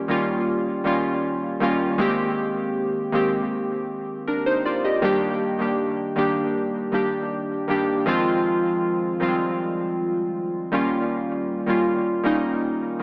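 Awash in a wet spring reverb and heavy echo, the recording has the sound of an AM radio broadcast. This moody, longing R&B excerpt moves at 79 BPM in a straight 4/4, with a single part carrying everything for its full 13.0 seconds: analog keys played solo between Eb3 and Eb5. Their tone is round and detuned, blending square, sawtooth and triangle waves with a wave-folded edge, and each note strikes quickly and then decays. A filter sweep, chorus and analog delay color the keys, which sit up front in the mix. The harmony drifts from Eb9 to Abmaj9, Ebmaj7 and Fm7 before returning to Eb9 at 10.7 seconds.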